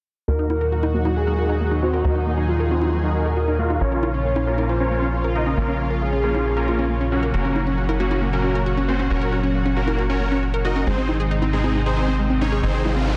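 A straight 4/4 pulse drives this euphoric uplifting trance passage, with a punchy, saturated sequencer bass up front beneath huge, detuned supersaw chords that carry the melody through a filter sweep and dub echo, a velvety synth lead with vibrato adding a second line until 7.2 s, a thick, warbling unison pad holding sustained chords, a round analog pluck playing arpeggios with cassette-tape colour and its own filter sweep, dry, overdriven electronic congas in the background, and a brief noise sweep arriving at 12.9 s, all within a dense, heavily limited modern master.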